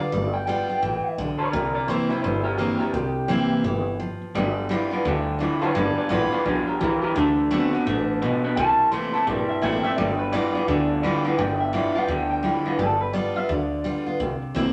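A twangy, slightly broken-up electric guitar solo carries the melody over a full-bodied, up-front picked steel-string acoustic guitar and a growly pizzicato upright bass in this rollicking, upbeat swung rockabilly excerpt from a longer piece, with a second lo-fi electric guitar through a small old amp adding a riff from 4.3 s to 12.8 s, all moving through G7, C7 and D7 in a wet, large studio reverb.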